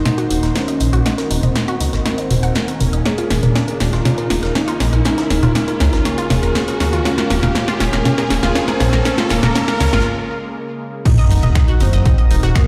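A straight 4/4 pulse at 120 BPM drives this cinematic, melancholic melodic techno excerpt in Eb dorian, moving from Ebm to Bbm7/Eb and back. A punchy, tape-warm house kit of snare, hats, toms, finger snaps and crash carries a fill through the build over a very quiet, dry soul kit, while a deep, rumbling detuned saw bass pumps under the sidechain and a smooth, nasal synth lead with vibrato plays alongside a chorus-laden pluck arpeggio, both opening through filter sweeps above a lush, airy pad in the background. A warbling vintage drone stops at 10.1 seconds and a riser builds from 0.8 seconds into a short break, until at 11.1 seconds an up-front electronic kick lands with an impact and sub drop for the drop, the mix sitting in a large studio reverb.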